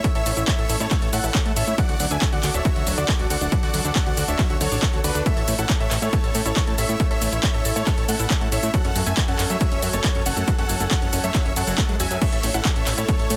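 Dense and heavily limited with little reverb, this euphoric, uplifting trance excerpt is cut from a longer piece and moves in a straight 4/4 pulse over a progression that runs from A to D, back to A, then to F#madd9 and home to A at 12.2 seconds. A huge, bright supersaw lead carries the melody, its detuned sawtooth unison compressed and pumping against the kick, with dub echo trailing its lines. In the background a clear, open concert grand piano plays a second line with a deep low end, tape echo and the same sidechain pumping. Beneath them a lush, thick unison pad holds very quiet sustained chords with a slow attack and long release, while a round, warbling vintage pluck spins arpeggios through chorus, cassette tape colour, a filter sweep and tape echo. The drums hit hard: an overdriven electronic kick sits up front until 13.2 seconds, joined by a punchy analog drum machine with crash cymbal, handclaps, hi-hat and shaker, both re-recorded in a large room. 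From 0.2 seconds a fat, nasal, evolving analog bass of detuned sawtooth and square waves pumps underneath, anchoring the whole excerpt.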